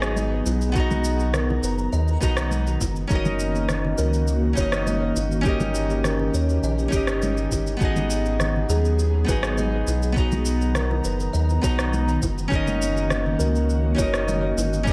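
A wistful sunset chillout excerpt at 102 BPM opens with a bright, fingerpicked nylon-string guitar up front, its finger squeak trailed by diffuse ambient delay, alongside an ethereal, detuned pad with ensemble chorus, a woody, hollow kalimba ringing in the background, a round, deep analog bass with tube saturation, and a tape-warm electronic rim click and shaker; gentle-handed congas and bongos join at 0.2 seconds and a soft electronic kick drum with a large-room sound at 0.8 seconds, as the harmony moves through G#m7, Bmaj7, F#6 and D#7/G.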